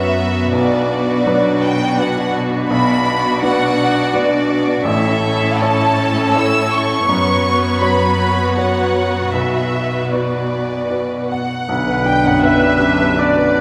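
A moderate scoring-stage reverb surrounds this bittersweet, longing film-score excerpt in B minor, a rubato 3/4 at 76-84 BPM, where an up-front, clear violin section carries the melody over a distant second violin line, an intimate baby grand piano with audible action noise, lush close violas and smooth cellos, until at 11.7 s an airy flute, a soft-attack oboe, a very quiet clarinet, a mellow French horn section and a rich double bass section join for the final moments.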